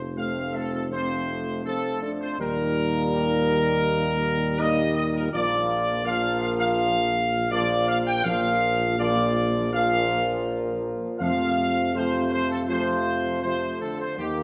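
A dark tuba opens the passage alone at 0.0 seconds, with a smooth top and a light vibrato, and the rest of the brass joins at 0.2 seconds in this triumphant, majestic classical excerpt cut from a longer piece. At a stately 81 BPM in 4/4 with a straight feel, in Bb major, a trumpet section carries the melody up front with a clear, roomy, slightly distant tone. Behind it, a mellow French horn section and a tight trombone section with its own light vibrato hold sustained chords in the background, while the tuba anchors the bass. The harmony moves from F to Eb, settles on Bb, and returns to F at 11.2 seconds. A wet scoring-stage reverb with a 1.7-second decay gives the ensemble a broad, ceremonial sense of space through to the end at 14.4 seconds.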